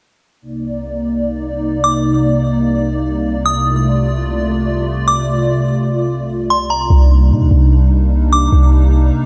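A hollow, flute-like pad stands up front in this atmospheric cloud-rap fragment, holding sustained chords with a slow attack, long release and a shimmering ensemble chorus. At 1.8 seconds a delicate, tinkling synth bell enters high above it, its FM tone decaying into a chorus and digital delay. The hip hop groove moves in a half-time feel, shifting from a minor ninth chord to a suspended chord and back. At 6.9 seconds a deep, boomy 808-style bass arrives with a fast attack and dark, decaying sine tone, giving the closing passage weight. Light reverb keeps the whole fragment spacious and ethereal.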